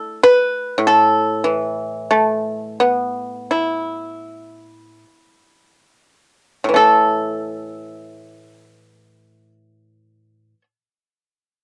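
A solo pipa, played with fingerpicks, sits up front with a mellow, percussive and dry tone, colored by the character of cassette tape and ranging from A2 to B4. This serene, flowing fragment of traditional Chinese plucked-string music moves in a free rubato around 34-50 BPM in 4/4, tuned slightly below standard pitch at A4 = 437 Hz, and slows over its opening 6.8 seconds before moving into a new section. Light reverb frames the intimate home cassette recording, which is cut from a longer piece, and the pipa plays for about 10.6 seconds.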